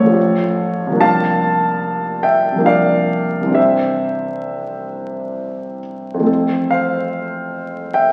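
Unhurried rubato in 3/4 carries this short fragment of impressionist classical piano, its pulse drifting between 64 and 75 BPM with a nocturnal, hazy mood. A single concert grand plays alone from the opening moment to 8.1 seconds, ranging from a deep bass A1 up to A5. Its sound is intimate and natural, placed up front, with the clatter of the action audible alongside the notes. The harmony moves through Aaug7 and C9sus4, settles onto Cadd9, and arrives at Fmaj7 near 6.3 seconds, all within a single section. A wet recital-hall reverb surrounds the instrument, and the whole passage sounds like a very old 78 rpm record, with vinyl crackle running under the piano.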